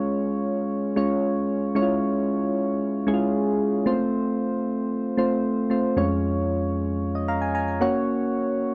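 Glossy and romantic, this short pop fragment features a lone synth keys part with a soft, electric-piano-like tone, round and mellow, its fast attack decaying gently under a touch of chorus. Set up front in a dry, close studio sound with light reverb, the keys move through chords from Db to F, Db/F and Gb, with a brief fill from 7.0 to 8.1 seconds before the cut at 8.7 seconds.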